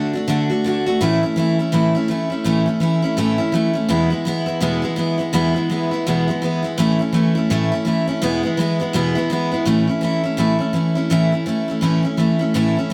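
A picked steel-string acoustic guitar opens this rowdy, retro rock fragment and carries it on its own for the full 12.9 seconds. It sits up front with a bright dreadnought tone, and a finger squeak can be heard. A slapback echo trails its lines, and light reverb adds a little space. The tempo is a brisk 166 BPM in 4/4 with a swung eighth-note feel, in A major. The harmony moves from D to A and E and back, and a new passage begins at 9.7 seconds on A.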